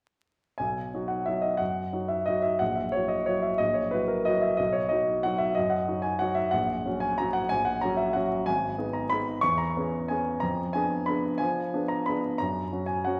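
A solo baby grand piano enters at 0.6 s with a polished, present tone and short sustain, playing a graceful, playful classical waltz in B major at 183 BPM in 3/4 with uneven, rubato beats, moving through chords such as F#7/A#, G#m and Fdim7 before reaching F# at 12.4 s, set up front in a reverberant recital hall with vinyl crackle, in a fragment cut from a longer piece.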